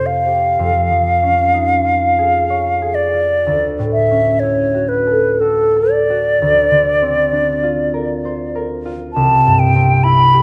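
Flute and harp begin together in this luminous, dreamy fragment of an impressionist classical duo, unfolding in a flexible, rubato three-beat metre. The concert flute carries the melody with a pure, hollow tone, its vibrato and tongued notes sitting up front between A4 and B5. Beneath it, the concert harp supplies a mellow, ringing accompaniment, thumb-plucked and also close to the ear, reaching from a deep C2 up to Db5. The harmony drifts through lush colours, moving from Fmaj9 and Dbadd9/F to Dmaj9 at 3.4 s, then Bbadd9/D, before settling on Cadd9 at 9.1 s. A wet recital-hall reverb surrounds the pair, and the gently rounded top end lends the whole 10.4-second passage a soft, hazy glow.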